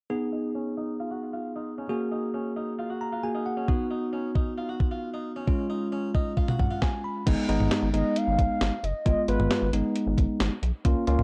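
A clean, sampler-style 12-bit drum machine sets a straight 4/4 pulse from 3.7 s, its thumpy kick and medium-tuned snare sitting up front alongside hi-hat, toms and crash cymbal. This nocturnal, melancholic synth-pop fragment opens with a bell-like tine electric piano carrying the chords, with short fills along the way. Beneath it, a close-miked, plucked harpsichord traces quiet arpeggios through a low-pass filter sweep and analog delay, and it falls silent during a brief stop just ahead of 7.3 s. A new section then arrives with a rubbery, bouncy square bass, dark and resonant with a filter pluck. Shortly after, a hollow, woody clarinet-like synth lead sings a brief melody with vibrato and chorus. The sound is dry and gritty, carrying a cassette-tape character with very little reverb.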